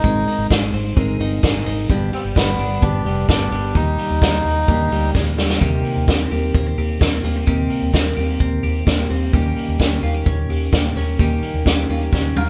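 Nostalgic and bright, this short excerpt of jangly indie pop moves at 129 BPM in a straight 4/4, set in Eb major. A reedy, breathy melodica carries the tune for the opening 5.1 seconds, then returns for only a brief moment at 12.4 seconds. Beneath it, a full-bodied jumbo acoustic guitar with fresh strings is fingerpicked throughout, while a compressed, twangy twelve-string electric guitar spins clean picked arpeggios. A foam-muted vintage bass supplies a dark, round low end, and an up-front vintage drum kit with a punchy kick and medium-tuned snare drives the band, adding fills at 5.1 and 12.1 seconds. The chords move from Abadd9 through G and Ebmaj7 before settling on Eb6 and Eb7, all captured as a band playing live in one room with moderate studio reverb.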